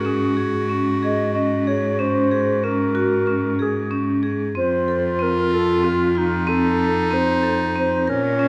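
Hopeful and playful, this short passage of contemporary chamber music moves in 11/8 at 187 BPM counted in eighths, with a straight feel and tuning set to A4 = 442 Hz. A mellow baroque flute carries the melody with a woody, pure tone, vibrato, crisp attacks and rolled-off highs, while a clarinet plays a second line in a classical style, sitting up front with a warm voice. Beneath them a single bowed cello holds the bass with a biting, intense edge and vibrato. From 0.1 seconds a vibraphone struck with medium hard mallets spins arpeggios, its metallic, ringing bars carrying a medium motor vibrato and sitting forward in the middle of the sound. The harmony shifts from Ab7sus4 to F7 at 4.6 seconds, and the ensemble sounds through a wet recital hall reverb in this brief cut from a longer piece.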